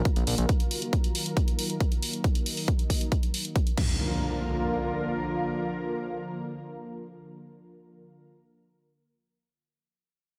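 An overdriven, punchy electronic kick leads this driving, emotional slice of uplifting trance, joined by an analog drum machine's crash and hi-hat, recorded in a small room, until about 3.9 seconds. A lush, detuned sawtooth unison pad with vintage warble and chorus holds sustained chords from Ebmadd9 to Bb, pumping against the sidechain under a filter sweep through the opening 4 seconds. A fat, thick sawtooth bass jabs briefly in the first half-second, and an electronic impact arrives at 3.8 seconds, all within light reverb.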